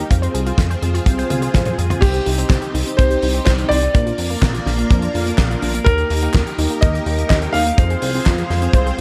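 A light reverb and studio ambience give this nine-second slice of a longer italo disco track a studio feel, danceable and nostalgic at 125 BPM in a straight 4/4, set in C minor. A dry, tight kick drum sits up front with a rolled-off top, joined by a damped 70s drum kit with dark cymbals, a fat snare, handclaps, hi-hat and toms in a small room with gated reverb; a drum fill runs from 1.3 to 2.0 seconds. Underneath, a glossy chorused synth bass mixes pulse-width modulation, ring modulation and a plucky filter, while a vintage string machine holds lush, full sustained chords through an ensemble chorus with a moving notch. Further back, a warbling, detuned unison pluck plays arpeggios through tape echo, and a round, brassy synth brass adds stabs with vibrato, chorus and a cassette-tape colour. At 2.0 seconds a worn, intimate grand piano enters with the melody, its action noise audible and a digital delay trailing it, as the chords move from C minor through B-flat and E-flat to F minor.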